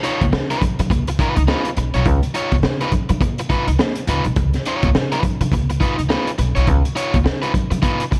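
An overdriven electric guitar and a crunchy, gritty breakbeat drum kit open this energetic, strutting funk excerpt at 104 BPM, with a high-tuned snare, tight kick and hi-hat riding a swung sixteenth-note feel in Db mixolydian over a Db9 chord. A woody pizzicato upright bass joins at 0.2 seconds, sitting lowest in register, while ringing, high-tuned congas enter alongside it in the background. The production is dark and dry, with the picked, compressed guitar and the saturated drums placed up front.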